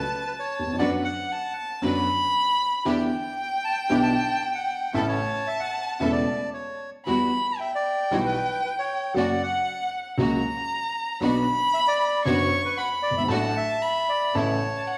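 Playful and passionate, this rubato tango fragment puts a reedy, bright bandoneon melody up front beside a single bowed violin's focused second line with vibrato, while a woody upright piano with audible action noise and short sustain carries the accompaniment and a clear studio string section adds biting, earthy stabs from 0.8 seconds, the band playing live together in a reverberant stone room.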